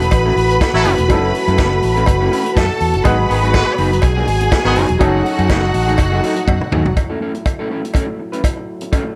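A swung sixteenth-note disco groove from a vintage drum kit with a tight kick and rolled-off top, joined by a background cowbell, drives this sultry excerpt as a round, punchy fingered bass sits up front beneath lush bowed strings, a clear baby grand piano, a dark, slightly broken-up electric guitar in spring reverb and mellow sustained French horn chords, while a warm, present pop horn section adds stabs from 0.7 to 4.9 s and a drum fill at 6.5 s leads into a closing stretch where only the guitar, drums, cowbell and French horns carry on.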